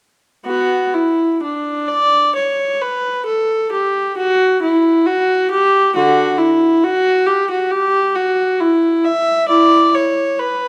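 Grave and solemn, this fragment of a baroque-style classical suite movement features a single unaccompanied viola, heard from 0.5 to 10.7 seconds with a free rubato feel. The close, up-front bowing has a nasal, reedy gut-string tone and an airy period-style sound, set in a moderate recital hall reverb within a dark, warm production.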